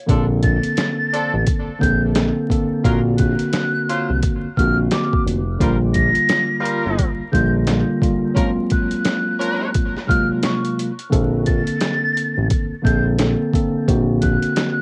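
Boom-bap hip-hop in Bb major at 87 BPM with a swung 16th feel, this confident, nostalgic excerpt carries a cassette-tape haze and vinyl crackle over a gritty, pitched-down sampler drum kit with a thumpy kick, a smooth, nasal synth bass and a clean, up-front tine electric piano moving through jazzy chords like Bbmaj9 and Gbmaj9#11. Punchy horn stabs with tape echo sit further back and drop out at 9.7 seconds, while a breathy, distant jazz flute with chiff and vibrato floats high above from 0.4 seconds, bathed in plate reverb. A break arrives at 8.4 seconds before the opening section returns at 11.1 seconds.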